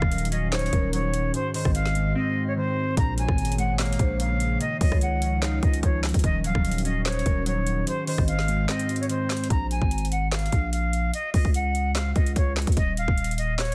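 A distant, airy concert flute carries the melody over chorused digital keys with a glassy sheen, an ethereal FM pad in the background, and an up-front trap kit with a hard-clipped kick, woody snare and metallic hats, in this dark, menacing half-time trap excerpt. A growling, buzzy 808-style bass anchors the low end, while a smooth, gliding portamento lead with vibrato adds a faint second line from 0.5 s. The drums drop out briefly at 2.2 s, and at 9.5 s the keys and pad fall away, leaving flute, bass and drums in a dense, heavily limited mix.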